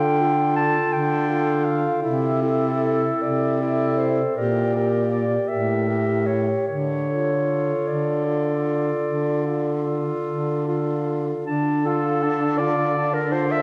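Classical and lyrical, this yearning, solemn excerpt for a single-reed quartet moves in a rubato 12/8 at about 49-55 BPM in dotted quarters, settling in D minor as it passes through Am/C, Gm/Bb and A5 before returning to Dm. A warm clarinet carries the melody over a second, vintage-toned clarinet line, while a clear tenor saxophone supplies the accompaniment. Up front sits a punchy baritone saxophone with vibrato on the bass, all wrapped in a dark production and a wet concert hall reverb.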